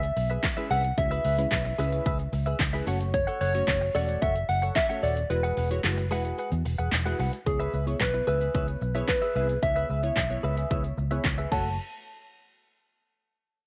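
Dance-pop at 111 BPM with a driving, bittersweet mood, this cut from a longer piece moves through C#m7, F#m and Eadd9. A gentle, keys-like FM synth lead carries the melody with a warbling chorus and slapback echo, over crisp, detuned wavetable chord stabs that pump against the kick, a twangy, clean direct-recorded electric guitar riff, and a dark, round, foam-muted fingered bass sitting up front. Punchy, overdriven pop drums with a fat snare, metallic hats, handclaps and shaker drive the groove, and the kick drops out between 5.3 and 7.5 seconds, while a very quiet, jingly tambourine plays from 0.4 to 7.1 seconds in a light reverb.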